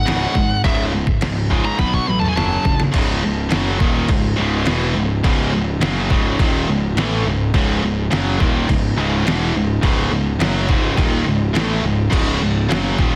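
A dense, heavily limited modern master with little reverb frames this epic, heavy metal clip, cut from a longer piece and set in a straight four-four feel. It opens on a brief, distorted lead guitar solo high on the neck, carried by digital delay, that ends around 2.8 seconds as a drum fill closes the opening passage. From about 2.9 seconds the music settles onto a C# minor chord for a riff section. Two picked rhythm guitars share that riff: one overdriven and sitting in the background, the other a bright, heavy high-gain part. Beneath them, a fuzz-drenched picked bass growls up front. The drum kit sounds sampled and pitched down, gritty and tape-tinged, with a thumpy kick, medium-tuned snare, crash cymbal and toms re-recorded in a large room.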